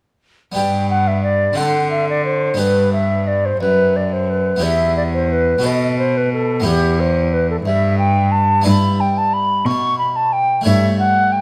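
A pure, wooden-toned baroque flute with vibrato and a crisp attack leads this radiant, dance-like baroque-style sonata movement in G major, in 6/8 at 59 BPM by the dotted quarter, over a brilliant, close-miked harpsichord and a single bowed cello with a rich gut-string tone, all set in a moderate recital-hall reverb as the harmony moves from G through Em to A7/G in this section cut from a longer piece.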